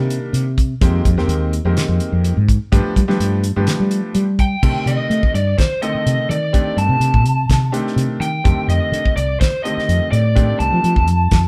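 A round, dark fretless bass and a brilliant concert grand piano open this nocturnal, slick stretch of electric jazz fusion at 126 BPM in straight 4/4, joined almost at once by a dry 70s drum kit with a fat snare and tight kick, all moving through Cm9, Fm11 and G7 before settling into C dorian. At 4.4 s a lo-fi, overdriven lead guitar, picked through a small cranked amp, takes the melody up front over Cm69 and F13 chords. The band sounds like it is playing live in one room with moderate studio reverb, and the passage is cut from a longer piece.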